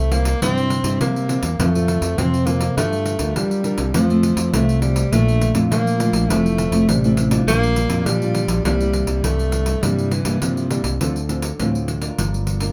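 Bittersweet and lively, this short samba and choro fragment pairs a mellow, breathy tenor saxophone with subtone and scooped, vibrato-touched notes as a second line, a dark, fingerpicked nylon-string guitar with audible finger squeak, an overdriven fingered electric bass, and a jingly, hard-handed pandeiro, all played live in a wet small room, with the saxophone stopping at 11.0 seconds as the harmony moves to a new section.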